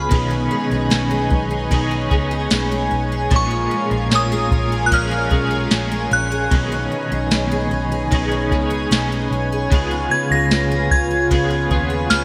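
Dream pop at 75 BPM in B lydian, this ethereal, blissful excerpt drifts over a B69, A#m7, B69 and C#7 progression. A glassy, crystalline FM synth bell carries the melody with chorus, tremolo and delay, over a shimmering octave-doubled twelve-string acoustic guitar picking arpeggios, a slightly broken-up electric guitar with tremolo, a thick detuned sawtooth pad holding sustained chords, and a round, foam-muted bass. A soft vintage rhythm box with a deep kick, crisp snare, ride and tambourine joins at 0.1 seconds under gated reverb, and a lush hall reverb gives the whole mix a bright 1980s-style digital sheen.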